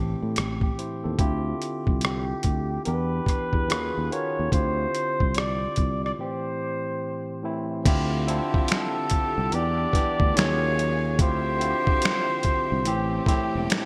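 A slow 72 BPM groove in 4/4 with a 62% swing on the sixteenths sets a late-night, introspective neo-soul and R&B mood in D minor, cut from a longer piece. A barky, lightly overdriven tine electric piano comes through a combo amp up front, joined at once by a round, dark fretless electric bass, while a dusty, sampler-style drum kit enters at 0.4 seconds with a thumpy kick, a medium-tuned snare, rim clicks, finger snaps, hi-hat and crash, all gritty and tape-tinged under a gated reverb. From 2.0 seconds a breathy flugelhorn carries the melody with light vibrato and a soft attack, its whispered, intimate jazz phrasing set close and trailed by digital delay. The harmony circles through Am7, Dm11, Em7 and the slippery Ebm11, with a break at 6.2 seconds before the second section opens at 7.9 seconds, where a lush, bowed studio string section adds sustained chords in the background. A moderate plate reverb and a bright, 1980s-style digital sheen frame the whole mix.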